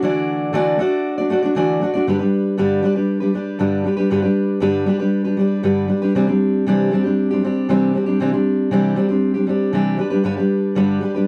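A fingerpicked steel-string acoustic guitar plays alone throughout this short pop excerpt, sitting up front with a warm, auditorium-sized body. The mood is sunny and easy-going, carried by a straight 4/4 feel. After a brief opening on Dadd9, the guitar settles onto G at 2.1 seconds, moves to Cadd9 at 6.2 seconds, and returns to G at 10.0 seconds. Its range spans G2 up to D5. A light reverb touches the guitar, while the overall sound is a dry, close studio recording in a 1970s style.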